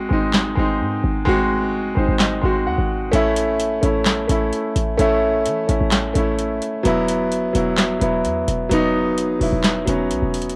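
Menacing, brooding trap hip hop at 129 BPM in a half-time feel, cut from a longer piece, where a clear, polished concert grand piano with short sustain sits up front over G#7, A and Esus2, a punchy, tight 808-style sine bass with a noise layer and transformer saturation decays beneath it, and from 0.3 s a booming, overdriven analog drum machine with a crisp snare, handclaps and metallic hi-hats sits close in a short room, all captured as a home cassette recording with light reverb.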